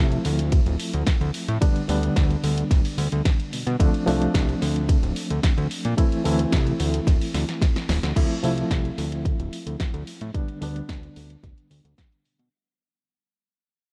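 A fat, thick analog bass sits up front from the first beat, its detuned sawtooth and square-wave tone given a plucky, fast-attack edge and a touch of tube saturation as it holds down the low end of this groovy, sensual nu-disco excerpt in D minor at 110 BPM. A reedy, clean electric piano plays chords beside it with a fast tremolo, a low-pass filter and delay, heard as if through its own built-in speakers, moving through Dm7, G/D, a rootless Bbmaj7 and Am. A punchy, layered electronic kick drives the straight 4/4 feel from 0.5 seconds, while a house kit adds a punchy snare, bright hi-hats, ride and crash. A drum fill leads to a band accent at 8.0 seconds, after which the bass and electric piano both take a filter sweep as the music fades out over the closing seconds. The sound is dry, with little reverb.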